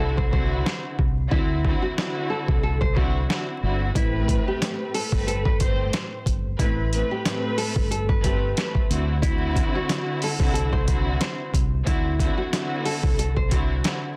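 A nylon-string guitar carries the melody from the first moment, full-bodied and fingerpicked, over a dark string section and a round, deep dub fingered electric bass, with a pitched-down sampler-style drum kit landing at 0.2 seconds. This is a reflective, dark boom-bap hip-hop piece at 91 BPM in 4/4, with a light 16th-note swing and tuning that sits slightly below standard pitch. The opening four seconds form a break. The harmony moves from D9 to Amadd9 at 4.0 seconds and back to D9 at 8.9 seconds. The bowed strings sound woody and lush with vibrato, sitting distant behind a cassette-tape haze and plate reverb, while the guitar carries its own plate reverb and tape echo. Up front, the gritty, compressed drums deliver a thumpy kick, a medium-tuned snare and hi-hat. The dense, heavily limited master is flecked with vinyl crackle, and this short cut from a longer piece ends at 14.2 seconds.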